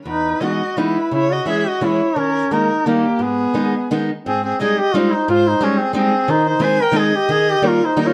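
Musette waltz in 3/4 at 175 BPM with a light swing, bittersweet and whirling, moving from G# minor to Ab major at 4.3 seconds. From the start a roomy, distant duduk carries the folk-style melody with vibrato and scooped notes under plate reverb, a single bowed violin adds an expressive second line with soft attack and portamento, and a bright, boxy parlour steel-string guitar fingerpicks the accompaniment up front with fresh strings and finger squeak, all in a dark, warm production cut from a longer piece.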